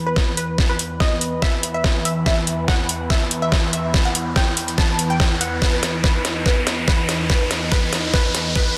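A half-time heavy wobble dubstep build-up, cut from a longer piece, rides a drum fill that runs its whole length. An overdriven, knocking electronic kick sits up front with a layered drum kit of deep snare and metallic hi-hats, the kit sounding re-recorded in a small room, while an electronic riser climbs in the background from 0.5 s. Above them, a bright, thick sawtooth unison pad holds sustained chords and a mellow, nostalgic tape-like pad warbles behind it, both pumping with sidechain, as a punchy, detuned unison pluck carries the melody through lush chorus and dub echo, making for an aggressive, chaotic lift in a dense, heavily limited mix.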